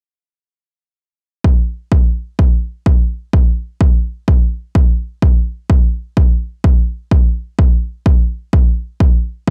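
A dry, gritty hardware recording cut from a longer house piece at 127 BPM in 4/4 with a 56% swing on the 16ths, where a punchy analog electronic kick drum, re-recorded in a small room and sitting up front, drives a euphoric, joyful pulse from 1.4 to 9.5 seconds.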